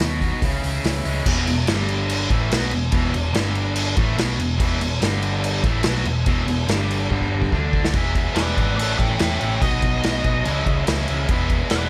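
A nasal lead guitar with a parked wah and overdrive takes a solo from 7.9 seconds, riding over a confident, sunny classic rock groove at 143 BPM in straight 4/4, while a biting overdriven guitar and a second overdriven electric guitar, both picked, drive riffs over a dark, round hollow-body short-scale bass. A vintage drum kit sits up front with a punchy kick, dark cymbals and a pumping small-room sound, marking the change with a fill just before the solo. Beneath it all, a very quiet, shouting tonewheel organ with key click and slow rotary speaker holds sustained chords, dropping out briefly and returning at 4.6 seconds as the chords move between E and G before climbing through A and B to C#m.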